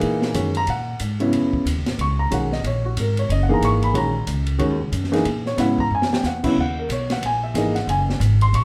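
A mellow, short-sustained baby grand piano sits up front accompanying over Ebm7 in this intense, cool modal jazz excerpt in Eb phrygian at 183 BPM with swung eighths, alongside a woody pizzicato upright bass on steel strings and a softer open jazz kit with dark cymbals, a high-tuned snare and a boomy kick that plays a brief fill at 5.9 s, the trio heard from further back in a wet club reverb.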